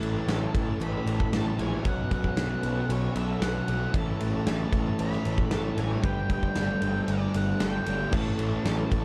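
The huge arena drum kit stands out up front in this hazy, dreamy shoegaze and dream pop excerpt, its punchy kick, medium-tuned snare, crash and ride ringing in a big, natural room at a straight 115 BPM in 4/4. Beneath it a growly, overdriven fuzz bass holds the low end, while a dark octave-fuzz lead guitar carries the melody high above through distortion and analog delay. A thick fuzz guitar sits very quiet under the mix, joined by a bright, double-tracked distorted electric guitar riffing in the background. Also tucked back are a compressed clean electric guitar, recorded direct and bathed in reverse reverb, and a boxy, shimmering twelve-string acoustic playing octave-doubled arpeggios through ensemble chorus and analog delay. Every part plays the full 9 seconds over a cycle of A, Bsus2, A and Gadd9, and studio reverb wraps the dark, warm production in a hazy glow.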